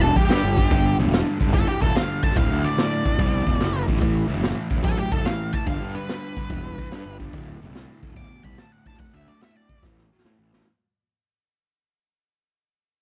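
A dry, close recording in a 1970s studio style carries this driving, raunchy blues rock and southern rock cut, swinging at 145 BPM in D mixolydian over a G, D and A progression. A growly, bright fuzz bass sits up front beside a gritty, saturated garage drum kit with a boomy kick, while a double-tracked crunchy guitar plays the riff and a dark octave-fuzz lead takes the melody through wah and tape echo until 9.8 seconds. A drum fill closes the passage under a fade-out that runs its full length.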